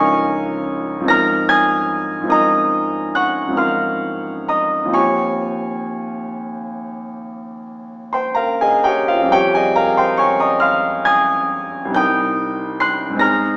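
A solo concert grand piano opens at 0.0 s on a D-flat six-nine chord, setting a dreamy, serene impressionist mood in A-flat major. The tempo is slow, around 40-50 beats per minute counted in dotted quarters, in 9/8 with a free rubato feel, and the instrument is tuned to A4 = 435 Hz. Its tone is clear and smooth with a deep bass and a vintage character, spanning from C2 up to C7 and sitting up front. The harmony drifts through A-flat six-nine, E-flat thirteen, F minor add nine and, at 12.0 s, C minor seventh, each chord adding color. A lush scoring-stage reverb surrounds the piano, and the overall sound places the listener further back in the room with a small-speaker quality. This short classical passage, cut from a longer piece, ends at 13.6 s.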